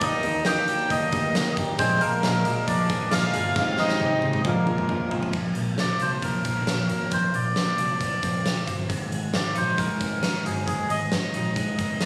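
A reedy, breathy melodica carries the melody up front throughout this nostalgic, youthful slice of jangly indie pop, its airy, nasal tone washed in plate reverb and tape echo. The tempo sits at 135 BPM in a straight 4/4 in Bb mixolydian, with chords moving from Ebmaj7 through Bb7 and Abmaj7 before settling on Bbadd9 and Ab. In the background, a bright trumpet adds a second line with light vibrato and scooped notes, while a dark, woody, fingerpicked jumbo acoustic guitar with old strings supplies full-bodied accompaniment; both drop away by 5.3 seconds. A clean, twangy twelve-string electric guitar plays compressed arpeggios under spring reverb and tape echo, and a foam-muted vintage electric bass gives a round, amped low end. A big rock drum kit with a fat snare and punchy kick sits up front in a stone-room sound, rolling through a fill from 3.6 seconds that leads into the second section at 5.3 seconds. 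Captured on a phone in a moderate club room with added studio reverb and compression, the recording is cut from a longer piece.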